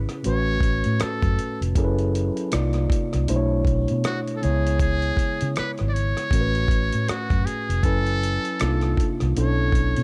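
A muted trumpet carries the melody from 0.3 seconds, its buzzy, breathy tone whispered and intimate with a light vibrato, in a smooth, sultry neo-soul R&B excerpt at 79 BPM with a swung sixteenth-note feel. Beneath it, an overdriven tine electric piano pushed through a combo amp sits bright and up front, moving through chords such as A69, F#m11 and Cm11, while a foam-muted electric bass adds a dark, round punch. A dusty sampler-style kit of hi-hat, thumpy kick and rim click sounds compressed and gritty, all in a dry mix with little reverb.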